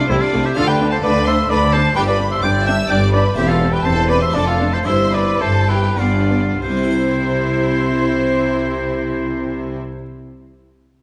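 Lively and brilliant, this short excerpt from a baroque-style concerto movement in C major moves in 3/4 between 93 and 130 BPM, with the tempo slowing between 2.7 and 6.6 seconds before a new section arrives on a C chord at 6.6 seconds. A distant, roomy oboe carries the melody alongside focused, bowed violins with vibrato, while a second violin line moves beneath them, and smooth and even violas and an airy harpsichord in the background supply accompaniment. Expressive cellos and double basses with a smooth top anchor the bass, all set in a dark production with a moderate stage reverb of 1.9 seconds.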